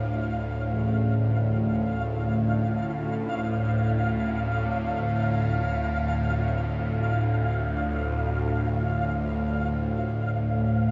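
Drenched in a huge, wet reverb that hangs for 8.3 seconds, this short fragment of a longer dark ambient drone feels unsettling and unmoored, settling on a single D minor-major seventh chord. Up front, a tense, string-like bowed drone of detuned sawtooth voices swells in slowly with vibrato, a noise layer and a phaser, while a mellow, flickering granular texture glints high above it. From 0.7 seconds, very quiet old church bells ring out bronze, clangorous arpeggios with a beating minor-third overtone, sounding boxed into a small room.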